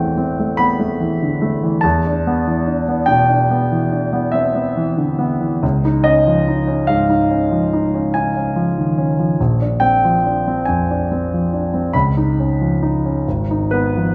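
A polished, present grand piano plays alone up front in this luminous, serene impressionist classical passage, unfolding in 9/8 with a rubato feel through chords such as Am7, Em7, Dbadd9, Bb9 and Abm6, spanning Ab1 to B5, tuned to A4 = 437 Hz and bathed in the resonant reverb of a recital hall, in a brief 14.1-second cut from a longer piece.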